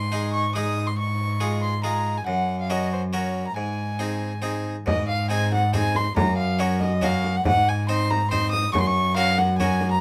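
A renaissance-style consort dance in a classical vein, this stately, courtly passage moves in a steady 3/4 at 140 BPM in Ab mixolydian, cut from a longer piece. A single violin carries the melody up front, its bowed gut-string tone nasal and reedy with an airy bow and period-style character. Beneath it, one harpsichord in Flemish style supplies bright, plucked accompaniment from a single set of strings, while a lone bowed cello holds the bass low and dark, its reedy gut strings topped with a smooth edge. At 4.9 seconds, as the opening phrase repeats, a deep, large acoustic frame drum joins in the background with a small-room sound. The harmony circles Ab, Db over Ab and Gb, and a light reverb gives the consort a gentle sense of space.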